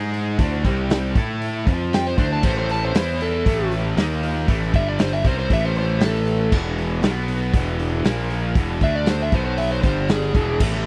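Blues rock and southern rock in a raunchy, driving power-trio vein at 118 BPM, this short, dry and close 1970s-style cut pairs a double-tracked, overdriven electric guitar riff with a growly, fuzz-laden picked bass sitting up front and a raw garage drum kit with a punchy kick and rolled-off top, while a very quiet, gritty tonewheel organ holds sustained chords through a slow rotary speaker and an overdriven slide guitar with slapback echo enters at 1.9 s to carry the melody over shifting seventh and power chords.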